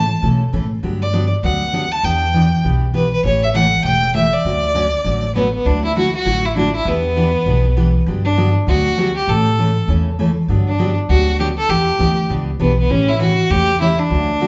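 Cheerful and down-home, this western swing excerpt moves at a brisk 199 BPM in D major with a lilting swing on the eighth notes. A clear, focused bowed fiddle carries the melody up front with light vibrato, while a picked dreadnought acoustic guitar adds warm accompaniment, finger squeaks and all, and a woody, dark pizzicato upright bass anchors the low end. The band sounds like it is playing live together in one large studio, bathed in a wet reverb with a soft, rolled-off top, as the chords cycle through jazzy sevenths such as Gmaj7, Em7 and A7.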